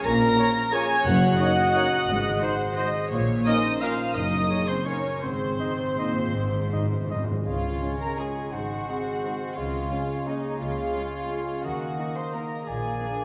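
Violins carry the melody high above the orchestra in this elegant, sweeping classical passage in triple metre with a rubato feel. Their tone is pure and floating, bowed sul tasto with a soft attack. A second violin line joins oboe, clarinet and a silver flute in supporting parts: the oboe is clear with light vibrato, the clarinet dark with a smooth top, the flute airy and mellow with rolled-off highs. Violas accompany in the background, cellos and a dark chamber double bass section hold the bass, and a thumb-plucked concert harp rings out arpeggios throughout. A distant French horn section sustains very quiet chords, a mellow trumpet adds stabs until 7.2 seconds, and hard-mallet timpani on calf heads sound close and dry, with a fill from 5.2 seconds. At 7.5 seconds the music moves into a new section where a mellow bassoon joins the accompaniment, all within a wet scoring-stage reverb in this excerpt from a longer piece.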